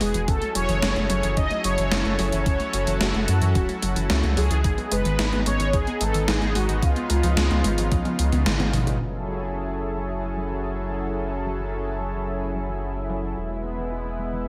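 Nocturnal and moody, this synthwave excerpt moves at a steady, straight four-beat pulse. A mellow, brassy synth lead with vibrato, chorus, delay and a touch of vintage 12-bit sampler grit carries the melody until 8.4 seconds. Beneath it, a lush, detuned unison pad holds thick chords that pump against the beat, while a warbly, lo-fi pluck with chorus and digital delay sits in the background spinning arpeggios. A round, deep analog bass, also pumping, sits up front alongside a gated 80s drum machine whose overdriven hi-hat, snare and toms carry a gated-reverb snap, joined by a thumpy, overdriven electronic kick that drops out at 8.0 seconds. A drum fill and a band accent lead into a new section at 9.0 seconds, all framed by a light digital ambience.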